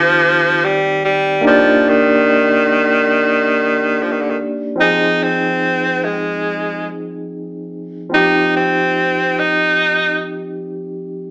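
A tenor saxophone and a tine electric piano begin together in this tender, romantic reggae fragment, cut from a longer piece and set at 72 BPM in 4/4 with a 16th-note swing. The saxophone carries the melody in an edgy, forceful pop style, with vibrato and scooped notes. The barky piano accompanies through a combo amp, lightly overdriven and shimmering with fast tremolo. Both sit up front in a live band sound, played together in one room and heard as if through a small speaker. The harmony moves from Eb69 and Ebmaj7 to Fm7 at 4.8 seconds, where the sax opens into a punchy solo before stopping at 10.2 seconds, while the piano carries on to the end. A wet, large studio reverb surrounds the pair, and the band is tuned slightly flat of standard pitch, to A4 = 437 Hz.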